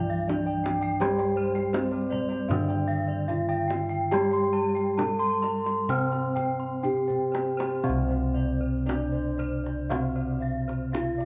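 Javanese gamelan in C slendro, tuned to A4 = 437 Hz, this short excerpt cut from a longer piece moves at an unhurried 58-84 BPM in a straight 4/4, its mood serene and shimmering. A bronze metallophone struck with padded disc mallets carries the melody between C4 and C5 with a mellow, soft ring, while a second metallophone, played with a wooden mallet, supplies accompaniment an octave lower and glints with the beating of its paired tuning. Up high, bossed gongs and a third wooden-mallet metallophone spin arpeggios between C5 and C6, the gongs round and pulsing, the metallophone airy and shimmering. Deeper bossed gongs hold the bass from C2 up to G4+25c, and a tight, vintage-sounding kendang with a band-limited tone enters at 0.3 seconds, playing a drum fill from 6.8 to 7.8 seconds that ushers in a new section. A moderate plate reverb lets the bronze tones hang and blend into a luminous wash.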